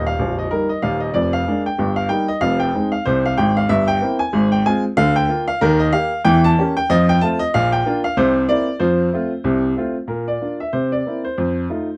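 Light reverb and a dark production frame this short cut from a longer piece, with a clear baby grand piano sitting up front. It is playful, swinging stride jazz at 188 BPM in 4/4, with a 60% swing on the eighth notes. The solo piano spans Bb0 to A5, moving from Eb major into Bb major at 5.0 s through changes such as Fm7, C7/G and an Edim7 passing chord. At 10.1 s a new section begins, moving through Bb, C7 and F7 before the clip ends at 12.0 s.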